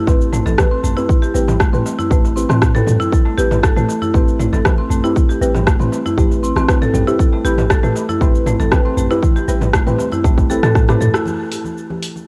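Hypnotic and driving, this afro house clip moves in a straight 4/4 over a single Am7 chord, with a dry, close sound that carries the grit of a home cassette recording. Up front, a woody, bright marimba with rosewood bars plays arpeggios, its notes pumping against the kick and trailing tape echo, while a dark, soft chord stab built from folded triangle, sawtooth and sine tones sits beneath, treated with chorus, phaser and tape echo as a filter sweep runs across it until 11.3 seconds. A deep, boomy 808-style bass with a sine body, a noise layer and tube saturation anchors the low end, and a punchy, tape-warmed electronic kick drives hard at the front of the mix. A house drum kit of cabasa, hi-hat, rim click and toms fills in the groove, joined by very quiet congas with a thick, soft-handed skin and a large, deep, saturated clay darbuka set in the background. A drum fill runs from 10.8 to 11.3 seconds, with a band accent landing at 11.1 seconds. 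Afterwards the chord stab, kit and congas carry on briefly to the close of this cut from a longer piece.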